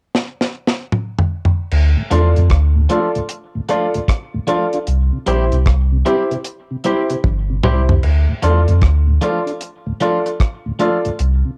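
A light reverb and the soft grain of a cassette home recording frame this short, laid-back and serious roots reggae excerpt in D minor at 76 BPM, swung on the sixteenths in 4/4. A deep, dry acoustic drum kit opens alone with a fill across crash, hi-hat, kick, rim click, medium-tuned snare and toms, its tight kick sitting up front, and it fills again from 7.2 to 8.0 seconds. At 1.7 seconds a round, sine-like sub bass arrives up front, its fast attack and sustained, mellow notes anchoring the harmony as it moves from D minor to C and back. A woody, natural upright piano places up-front stabs bathed in plate reverb, while a clean, twangy electric guitar with a scooped, compressed picked tone adds tape echo to its accompaniment. Beneath them, a dark, mellow tonewheel organ carries chorus vibrato and a slow rotary speaker, filling out the low and middle register.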